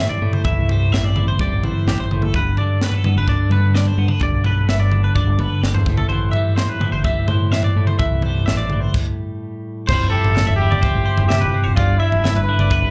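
A straight, steady 4/4 groove drives this wistful, intricate math rock and midwest emo passage, taken from a longer piece and heard as a live club set through the venue's PA. A crisp fusion drum kit sits up front with a high-tuned snare, punchy kick, crash cymbal and toms, while a growling fingered electric bass adds overdriven grit down low. A clean, compressed twelve-string electric guitar picks bright accompaniment with slapback echo, and a twangy electric guitar weaves arpeggios above it through lush chorus and the same echo, over a progression moving from Am7 to G and back to Am7. The band hits a stop at 8.9 seconds, and at 9.9 seconds the harmony shifts to Fmaj9 and G13 as a warm trumpet enters with the melody. The trumpet plays in a pop style, with light vibrato and scooped notes, and sounds distant and roomy.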